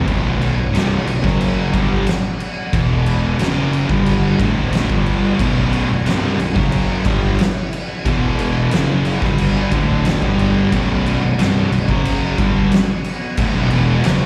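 Heard as a live gig through the venue's PA, with recital-hall reverb and small-room ambience, this 14.3-second cut from a longer stoner and doom metal piece sits at a steady 90 BPM in B minor, brooding and ominous, its riffs pivoting between Bm and E5. An oversized, low-tuned acoustic kit dominates up front, with a boomy kick, fat snare, dark crashes and a pumping, gritty room sound. Beneath it, two thick fuzz guitars (one mellow, one murky) and a bright double-tracked distorted guitar with slapback echo churn out the riff over a growly, punchy overdriven fingered bass line, while a faint swirling, vintage string machine with phaser and ensemble chorus holds sustained chords.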